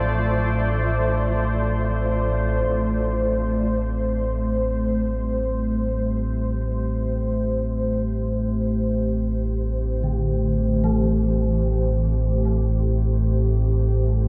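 An ominous, warbling low drone rumbles up front through this desolate dark ambient passage cut from a longer piece, joined by a moody, detuned sawtooth pad with chorus holding sustained chords, a grainy, flickering granular texture that sits in the background until 2.7 seconds, and from 10.0 seconds a ringing, shimmering bronze gamelan-type metallophone playing delayed arpeggios, all set in a huge ambient reverb and a dark production.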